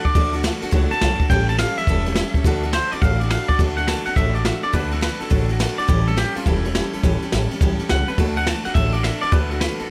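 A swung rhythm drives this upbeat, rowdy rockabilly clip at 209 BPM in 4/4, cut from a longer piece and set in D major as the harmony moves between D and A7. Up front, a jazz kit played with brushes lays down kick, snare and ride, its boomy kick, medium-tuned snare and dark cymbals captured with an airy, polished studio sound. Beneath it, a pizzicato upright bass with gut strings gives a woody, thumpy low end. A picked steel-string dreadnought acoustic guitar fills the middle with a full-bodied accompaniment. On top, a clean, twangy electric guitar carries the melody through an analog delay, taking a solo from 0.0 to 3.6 seconds before the second section begins. The mix is dry, with little reverb, so the parts sound immediate and lively.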